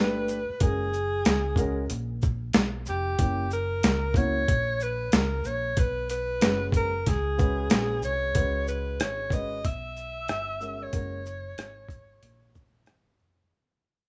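Mellow and nocturnal, this jazz-hop fragment of a longer hip hop piece moves at an easy pace with a swung sixteenth-note feel. An alto saxophone takes the solo melody up front, its clear tone carrying vibrato, soft attacks and scooped notes in a jazz style. Beneath it, a dark grand piano plays smooth, intimate accompaniment with a vintage character and audible action noise, dropping out at 11.2 seconds. A hollow-body short-scale electric bass, fingered and amped, gives a dark, round low end, while a boom bap sampler-style kit enters at 0.3 seconds. The drums sit up front, compressed, pitched down and gritty, with a thumpy kick, high-tuned snare, hi-hat, rim click and shaker. The mix is dry and rough like a home demo, and from 8.4 seconds a new section shifts to minor-seventh and diminished colours as the whole piece fades out.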